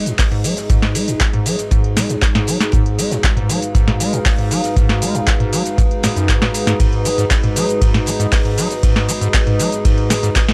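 A dark analog pad holding a G#m7 chord with phaser, chorus and sidechain pumping opens this trippy, hypnotic acid house excerpt alongside a squelchy, resonant square-wave acid bass riff with overdrive and analog delay and a warbling, lo-fi tape-like pad, before a booming analog drum machine with metallic hats and a tonal snare joins at 0.1 seconds and an up-front, deep electronic kick and a smooth, rolled-off acoustic kit in the background arrive at 0.2 seconds, set in light reverb.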